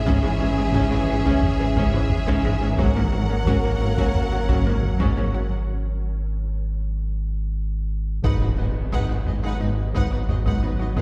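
A straight 4/4 pulse at 88 BPM drives this brooding, vast hybrid orchestral and electronic film cue in G# minor, with a close, dry taiko ensemble in the background and a deep, round sub bass up front beneath bowed cello and a very quiet, focused double bass section. A lush violin section carries the vibrato-laden melody over a soft-attack second violin line and expressive viola with portamento, while a mellow French horn section and a cloudy, evolving granular pad sustain the chords and a nasal, detuned analog pluck spins arpeggios through chorus and digital delay. After a break at 5.5 seconds and a drum fill at 7.6 seconds, a huge, dark impact lands at 8.2 seconds on a G#m7 chord, all set back in a reverberant scoring-stage space.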